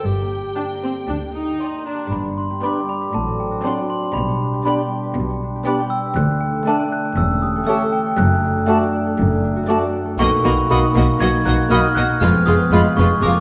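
Up front, a glockenspiel struck with rubber mallets carries the melody in soft, bell-like tones that ring over this mischievous, sneaky film cue, playful and whimsical at 119 BPM in G major. A lush violin section with focused vibrato states the tune from the start, with the glockenspiel joining it at 1.6 seconds, while a ringing concert harp spins arpeggios and a warm clarinet sketches a second line in the background. Underneath, a bright cello section and a dark, expressive double bass section hold down the bass, joined at 0.6 seconds by a dark chamber violin section and a rich viola section. From 2.1 seconds a distant French horn section adds sustained chords, and soon after a hollow flute, a mellow, roomy cor anglais and a close-miked bassoon fill in extra lines. The harmony wanders slyly from G minor into G major and on through chromatic turns, all set in a recital hall reverb, in what sounds like a cut from a longer piece.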